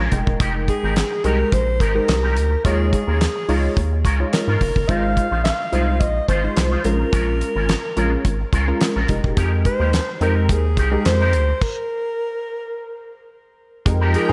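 A dreamy, reverb-soaked mix opens this slick, funky slice of early-eighties boogie funk in F minor at 107 BPM, where a rubbery, hollow square bass and a damped 70s drum kit with a fat snare and tight kick sit up front beneath a dark, punchy polysynth comp and a bright, twangy electric guitar riff through an envelope filter. From 0.7 s a breathy, intimate alto saxophone carries the jazz-style melody with vibrato, scooped notes and delay over a progression moving from Fm11 through Eb9sus4, Ab6 and Bbm7. A stop at 11.6 s gives way to a lush, airy unison pad entering at 13.9 s, and a mellow horn section sounds at 14.3 s as the cut ends.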